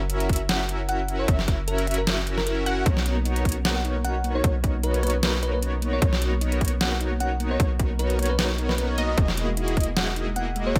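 A lush, euphoric haze of digital ambience surrounds this future bass piece, which is cut from a longer track and moves with a half-time, lightly swung feel. Up front, an overdriven, hard-clipped electronic kick and a layered dubstep kit with a deep snare and metallic hats sit in a small-room sound, while a long, mellow sine 808-style bass holds the low end and pumps with the sidechain. A smooth, detuned soft supersaw carries the riff with a moving notch, joined in the background by a punchy sawtooth unison pluck playing arpeggios through a filter sweep. From 0.5 seconds a bell-like, sparkling FM electric piano takes the melody with a warbling vintage chorus and dub echo. At 2.9 seconds a dark, round, tine-like thumb-piano-style pluck adds soft arpeggios treated with chorus and dub echo, as the harmony moves from F#7 to Bmaj9 and then Emaj9#11.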